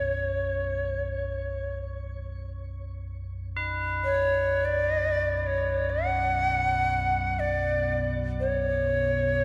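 A breathy, chiffy Native American-style cedar flute sings up front with unsteady vibrato, haloed in shimmer reverb and diffuse delay, over a deep, rumbling, ominous drone with subtle chorus in this spacious, haunting excerpt of world meditation music, while solemn, metallic tubular bells enter at 3.6 seconds in a wet church-like reverb.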